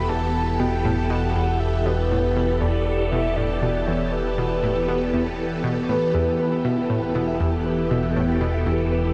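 Breathy, flute-like synth melody floats over swirling phased string-machine chords, a riffing analog pluck and a fat sustained analog bass from the start of this cosmic, expansive ambient space-music piece at 119 BPM in E minor, resting on Em7, until a mellow, ringing concert harp enters with arpeggios at 6.1 s, all set in a dark production with a huge, wet reverb that lingers for 9.2 seconds.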